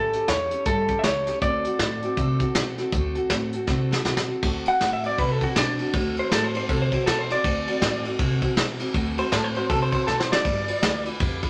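This upbeat, retro rockabilly excerpt opens on a dark, slightly broken-up electric guitar through a small old amp, carrying the melody up front, with a boxy picked acoustic archtop (finger squeak audible) and a woody, thumpy pizzicato upright bass on gut strings, joined at once by a vintage brush kit with dark cymbals and a punchy kick. It moves at 159 BPM in a swung 4/4 in D mixolydian. A drum fill at 3.7 seconds leads into a clean electric guitar solo at 4.4 seconds, another fill arrives at 10.1 seconds, and a wet studio reverb surrounds the ensemble and the lo-fi, compressed tone of the electric guitar.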